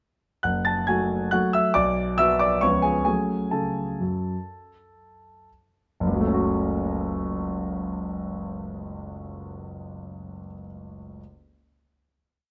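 A solo grand piano opens this elegant, bittersweet classical waltz in F# minor, its natural, up-front tone carrying a tune in octaves over a waltz bass in 3/4 at a rubato 112-146 BPM, moving from F#m through Bm and C#7 back to F#m as it slows from 2.4 to 6.0 seconds, where a final chord arrives, all set in light reverb within a dark, warm production.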